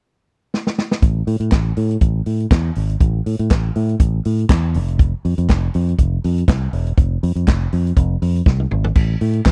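Danceable and glamorous, this disco passage, cut from a longer piece, moves at 121 BPM in a straight 4/4 feel in A minor. A vintage acoustic drum kit comes in at 0.5 seconds with a fill, setting out kick drum, snare, hi-hat, handclaps, toms and crash cymbal. The kit sounds natural and small-roomed, with a medium-tuned snare, a punchy kick and a rolled-off top end, sitting up front in the mix. At 1.0 seconds a fingered electric bass joins, moving between E1 and A2 with a round, direct-and-amped tone, also placed up front. Another drum fill arrives at 8.5 seconds, and the dry, close 1970s-style studio sound keeps both parts intimate and present.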